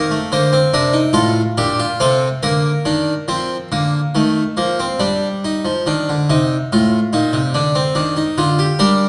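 Joyful and lively, this cut from a longer piece is a baroque-style classical fugue in three parts, written for solo harpsichord in B-flat major. It moves in a straight 6/8 at 47 beats per minute counted in dotted quarters, and the single harpsichord spans from A2 up to C5. The instrument is a Flemish-style harpsichord with two sets of strings, heard close-miked and up front with a plucked, full tone. Around it, a recital hall adds a reverberant bloom with a 1.4-second decay. The opening section runs to 3.7 seconds through Cm7, F/A and Bb/D, and the second section, which begins there and lasts until 9.1 seconds, passes through Ebmaj7/G, A diminished and Dm7.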